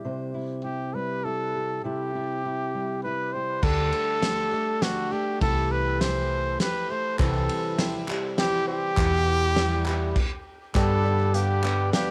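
Uplifting and anthemic, this indie folk excerpt moves at 101 BPM in a straight 3/4, built up layer by layer like a home cassette recording in a small booth. A dark, fingerpicked steel-string acoustic guitar with audible finger squeak opens alone before a close-miked trumpet enters at 0.6 seconds, carrying the melody with light vibrato and a classical poise, trailed by an analog delay. At 3.6 seconds the band arrives: a boxy, swing-style plugged-in acoustic guitar, a round, punchy hollow-body bass sitting up front, and a loose drum kit with a fat snare, tight kick, hi-hat, ride and crash, its top rolled off in a small room. A clear, woody upright piano with long sustain and distant, hollow group handclaps join from the background, while the chords travel from C through Dsus4, Am7/C and Em. After a brief stop, the arrangement lands on G as a reedy, nasal harmonium breathes in very quietly with sustained chords at the close.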